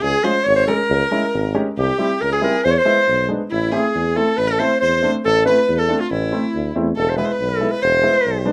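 A warm, classically styled clarinet carries the melody up front in this soulful, festive klezmer excerpt in a straight 2/4, with a clear, smoothly bowed violin adding a close second line with vibrato, a woody upright piano entering at 0.2 s with short-sustained accompaniment, and a distant, roomy tuba laying down a jazz-inflected bass with scooped notes and light vibrato, the tune shifting into a new section at 3.5 s under light reverb and close, detailed miking.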